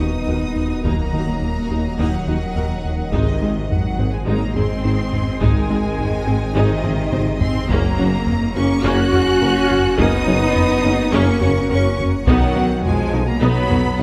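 A cinematic hybrid of orchestral and electronic film scoring, this excerpt from a longer piece feels vast and futuristic, moving at 105 BPM in a straight 4/4 through Ebm, Ab, Gb and B. Lush, vibrato-rich violin sections carry a focused melody alongside a distant second violin line in the same register, while violas fill in smooth accompaniment and a clear French horn section holds sustained chords in the background. The low end is dense: a studio cello section sings with a focused, smooth top, joined by a very quiet bowed double bass section, a mellow tuba, a thick, menacing detuned saw bass with beating saturation, and a rubbery, hollow square-wave bass riff. A cloudy, evolving granular pad with its own reverb shimmers behind everything, and a soft, round, nasal pluck traces dark arpeggios. The opening carries a barely audible sub drop impact before a heavy-stick taiko ensemble enters at 0.8 seconds, adding a drum fill around 6.8 seconds. 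A moderate concert hall reverb gives the orchestra a spacious sheen.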